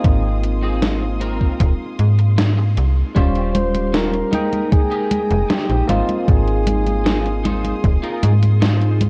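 Nostalgic and dreamy, this short vaporwave excerpt drifts at 77 BPM in a straight 4/4, set in Ab major and moving from Ab6 through Eb13 and a rootless Fm11 before settling back on Ab6. A thumpy electronic kick sits up front alongside a snappy, metallic FM bass, while a gated 80s drum machine adds congas, hi-hat and a gated-reverb snare, both drum parts re-recorded in a large room. A bell-like tine electric piano carries the accompaniment with subtle chorus and tape echo, an electric guitar at the edge of break-up plays a compressed, picked riff through ensemble chorus and tape echo, and a clear symphonic string section holds smooth sustained chords in the background. A band accent lands at 2.4 seconds, and at 3.5 seconds a mellow, close-miked flugelhorn takes the melody in a jazz style with light vibrato and tape echo, stopping at 7.8 seconds. The whole mix is dry, with little reverb, and is coloured by worn, warbling cassette tape with audible pitch drift.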